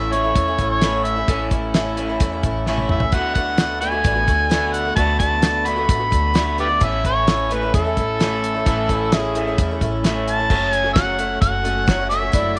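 A straight 4/4 groove at 130 BPM from a dry, fat-snared 70s drum kit, with a fill at 2.7 seconds, drives this open-road, jangly folk rock and heartland rock cut in A major: a gritty, overdriven harmonica leads up front with tongue slaps and scooped notes over a shimmering, octave-doubled picked twelve-string acoustic guitar, a twangy, lo-fi electric guitar riff through a small old amp, and a woody, thumpy upright bass, until a very quiet, reedy tonewheel organ with key click and rotary speaker adds sustained chords from 10.5 seconds as the harmony moves to F#m.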